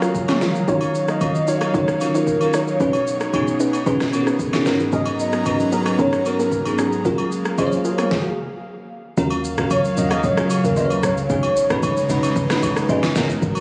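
Amapiano at 113 BPM in Eb minor, this late-night, deep excerpt from a longer piece moves through lush chords such as Gbmaj9, Ebm9, B69 and Abm11 under a light club reverb with a muffled, phone-in-the-room sound. A soft, round, octave-layered synth lead carries the melody with vibrato, chorus, phaser and digital delay, while a sparkling, bell-like FM electric piano adds mellow accompaniment treated with chorus and phaser. An airy, breathy pad holds sustained chords that pump against the beat, and a gentle pluck sits in the background with dark, soft stabs until it stops at 8.1 seconds. The deep house drum kit is overdriven and layered, with a deep kick and snare, rim click, shaker and toms, joined from 0.3 seconds by compressed, saturated agogo bells and woodblock with egg shaker and group handclap. After a brief stop, the drop at 9.2 seconds brings in a round, percussive log drum bass that lends the closing passage a dark, decaying low end.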